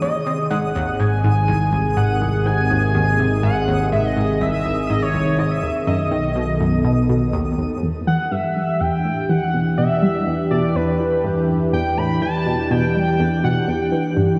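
Cosmic and mysterious, this excerpt of ambient, sequencer-driven space music moves at 123 BPM in a straight 4/4, settling into E minor from 7.8 seconds after opening on G# and passing through B7 before landing on Em7. A shimmering, retro pulse-width lead carries the melody up front, its warbling vibrato and pulse-width modulation colored by chorus, shimmer reverb and analog delay. Beneath it, a sweeping resonant pad holds evolving, detuned sawtooth chords with a slow attack and a filter swell, while an analog pluck plays a round, fast-decaying riff through chorus and analog delay, with a filter sweep moving across this synth arpeggio sound from 7.8 seconds. High in the background, a twinkling granular texture adds sparkling, octave-up FM glints with a long release. The whole mix is dreamy and soaked in a wet plate reverb, with a cassette tape character.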